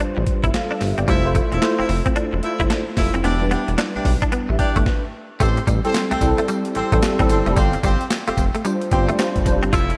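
Gritty, thumpy sampler-style breakbeat drums with kick, snare, hi-hat, handclaps and tambourine sit up front in gated reverb on this bouncy, punchy new jack swing R&B excerpt, joined by a detuned, gliding synth bass, a worn, slightly out-of-tune tine electric piano and a twangy, direct-recorded clean electric guitar riff, both colored by ensemble chorus, while a loose jazz-style horn section with octave doubling adds delayed stabs from 1.1 seconds, with a brief stop at 4.9 seconds in a bright 1980s-style digital production.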